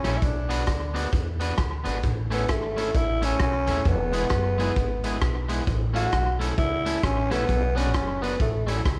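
Joyful and upbeat, this short ska excerpt in A major moves at 132 BPM with a swung eighth-note feel, cycling through Bm, A and E. A growling, breathy tenor saxophone carries the melody up front with light vibrato, over a twangy, slightly broken-up electric guitar with slapback echo and a woody, growly pizzicato upright bass. A raw garage drum kit with a punchy kick, hi-hat and rim click sits forward in a bright stone room, its top rolled off and touched with slapback echo, while light reverb surrounds the mix.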